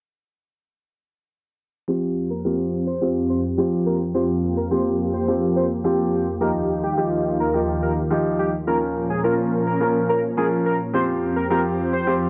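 A dry, gritty hardware recording with light reverb and a small-room ambience frames this driving, energetic pop excerpt, where all three parts enter together at 1.9 seconds under a filter sweep. A clear, open baby grand piano sits up front with the accompaniment. A lush, thick unison pad of detuned sawtooth with a slow attack, chorus and a vintage warble sustains the chords from Fsus2 through Ebadd9 and Bbm. A bold, retro octave-doubled lead with a sub octave, ring modulation, chorus and mellow vibrato carries the melody until 12.1 seconds.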